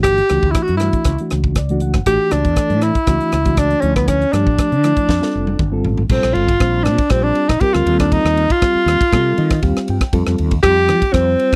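A bright, slick stretch of electric jazz fusion opens with all four parts together at 119 BPM in a straight 4/4, centered on A mixolydian. Up front, a warm tenor saxophone carries the solo melody in a jazz style with vibrato, scooped notes and a smooth top, touched by a slapback echo. Beneath it, a mellow, reedy electric piano comps with a medium tremolo heard through its built-in speakers, adding short fills around 1.3 and 9.1 seconds. A dark, round fretless bass anchors the low end, while a crisp, polished drum kit with a high-tuned snare and tight kick uses crash, ride, hi-hat, rim clicks and toms, playing a fill that leads into the second section at 6.1 seconds. The harmony moves through chords such as Asus4, Dmadd9 and F before shifting to Bb69 and Eb69, all captured in a dry, close 1970s-style studio sound.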